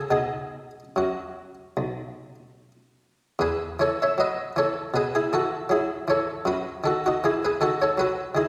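A solo buff-stop harpsichord opens this radiant, dance-like fragment of a baroque-style suite movement in E major, its muted, lute-like plucked tone ranging from B1 to E5 in a rubato 4/4 at 70-81 BPM, moving from B through E to an F#m13 by 6.5 seconds, all set in a recital hall's reverberant glow as if heard from further back in the room.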